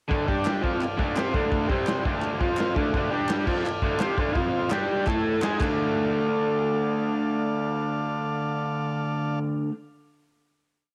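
A raw, gritty garage rock piece in D minor opens at 0.1 seconds with an overdriven, double-tracked electric guitar playing a picked power-chord riff up front, alongside an acoustic drum kit with a punchy kick, medium-tuned snare and crash cymbal, saturated and dark with a rolled-off top. Moments later a buzzy vintage combo organ enters with held triad chords, overdriven and touched with light vibrato, while a hollow group handclap sits close and dry in the background. At a driving 169 BPM in straight 4/4, the riff moves between D minor and power chords on G, C, F and A, climbing to a chromatic turn through G# just before the final hit. An organ fill from 5.1 seconds and a drum fill at 5.6 seconds lead into a final hit at 5.8 seconds, after which the drums and claps drop away. The organ rings out until 9.4 seconds and the guitar until 9.7 seconds. Moderate spring reverb and small room ambience surround the parts, and the whole piece carries the fuzzy grain of a home cassette recording.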